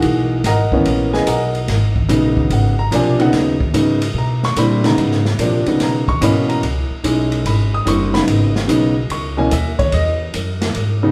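A warm, up-front grand piano carries the harmony in this searching, intense modal jazz excerpt in G# minor, moving from G#m9 to C#m9 at 6.6 seconds over a swung 146 BPM in 4/4. A woody pizzicato upright bass with steel strings anchors the low end, while an acoustic jazz kit with dark cymbals, a medium-tuned snare and a boomy kick plays hi-hat, ride, snare and kick with a smooth, rolled-off top. The trio sounds like a band playing live in one room, bathed in a large, wet studio reverb.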